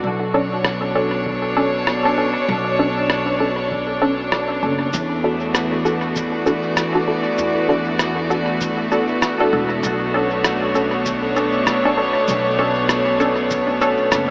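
Soaked in a huge ambient reverb with an AM-radio haze, this short cut from a longer ambient dub piece feels deep and dreamy, moving at 98 BPM in 4/4 with a 16th-note swing in B minor. Up front, a rich chamber string section holds bowed, sustained chords with light vibrato, its earthy tone and smooth top carrying the harmony from Bm7 to E7sus4 at 4.9 seconds and back to Bm7 at 9.8 seconds. Beneath it, a woody pizzicato upright bass with steel strings anchors the low end for the whole passage. From 0.3 seconds, a filtered dub chord stab adds short, fast-attack plucks, its detuned sawtooth and triangle tone both bright and muted, treated with chorus and dub echo. A sampler-style electronic rim click and shaker arrives at 0.6 seconds, compressed and muffled with its own dub echo. From 1.3 seconds, an analog electronic kick drum sits deep in the background with a tape-warm thump.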